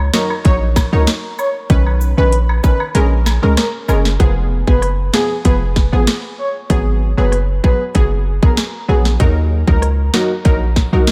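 A heavy, hard-hitting 808-style bass sits up front in this tough, sultry dancehall excerpt, joined by a tight electronic island pop drum kit with a sharp snare, metallic hats and rim clicks, whose kick drops out from 2.9 to 4.2 seconds; punchy detuned sawtooth chord stabs with chorus; a breathy, flute-like synth lead wrapped in chorus, tremolo and analog delay; and acoustic cabasa and woodblock that play only until 4.0 seconds, all over Eb minor harmony in light digital reverb.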